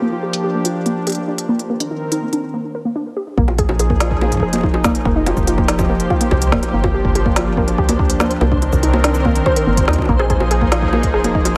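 A lightly reverberant, lo-fi haze opens this melancholic, intricate IDM excerpt in C minor at 143 BPM, where a smooth, detuned sawtooth pad with chorus holds sustained chords, a warbling, dusty pluck treated with cassette tape, chorus and digital delay spins arpeggios under a filter sweep, and a flickering, granular texture hovers in the background. An organic electronic kit of bongos, cabasa, smooth hats and a woody snare, overdriven and delayed, enters at 0.3 seconds and breaks briefly before 3.4 seconds. There a round, dark FM bass and a deep, overdriven electronic kick arrive beneath a cycle of Bb7sus4, F9sus4, Gm7 and Cm9.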